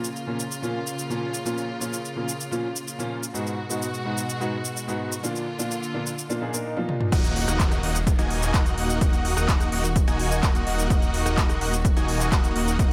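Opening on a clear, up-front grand piano trailing digital delay and earthy bowed strings, both pumping under sidechain, alongside a big-room drum kit with crisp hats, handclaps, shakers and toms, this anthemic, emotional festival progressive house excerpt in Eb minor at 127 BPM moves from Bbm through Abm7 to Bb, rides a background swell, downlifter and drum fill, then at 7.1 s drops onto Ebm with a punchy layered kick, a dark chorused detuned saw bass on Eb1 and a huge, bright supersaw riff roughened by 12-bit sampler grit, all in light reverb.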